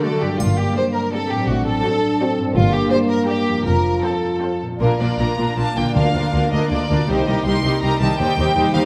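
In a rubato 3/4 at 154-170 BPM, this stormy, dramatic romantic orchestral excerpt in Bb major sets lush, vibrato-rich violins singing the melody over an up-front second violin line and focused, close violas, while a ringing thumb-plucked harp spins arpeggios, rich cellos and woody double basses carry the bass, dark, distant French horns hold sustained chords until 4.6 s, a dark triangle sounds briefly from 0.4 s, and very quiet, round timpani strike a lone D at 6.0 s, all within a moderate scoring-stage reverb.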